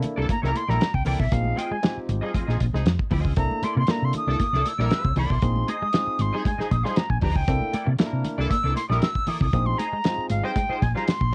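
A bright, reedy jazz flute with airy vibrato leads up front in this strutting, energetic funk excerpt at 117 BPM, over a vamp alternating C13 and Bb9sus4 built from a cloth-damped, thuddy drum kit with a fat snare and tight kick, a round, dark hollow-body fingered bass, a clean picked semi-hollow guitar riff with spring reverb, a second semi-hollow guitar in the background with ensemble chorus, barky tine electric piano stabs through a combo amp with plate reverb, a distant, mellow horn section playing a second line, and very quiet soft-handed congas, all captured at home on cassette with moderate booth ambience.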